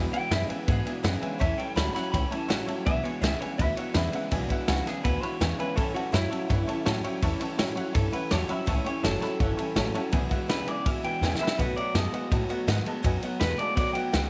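Rockabilly at 165 BPM in E mixolydian, this retro, rollicking excerpt is cut from a longer piece and moves through E7, A7 and B7 changes over a vintage drum kit with a punchy kick, medium-tuned snare and ride cymbal, plus a thumpy, woody upright bass played pizzicato on gut strings. A dark, slightly broken-up electric guitar through a small old amp plays a low riff, while a second, twangy electric guitar carries the melody with tape echo, supported by a jangly, metallic tack piano and a full-bodied dreadnought acoustic guitar sitting in the background with audible finger squeak. A drum fill arrives at 11.2 seconds just before the turn to B7, and light reverb gives the whole a natural studio-room feel.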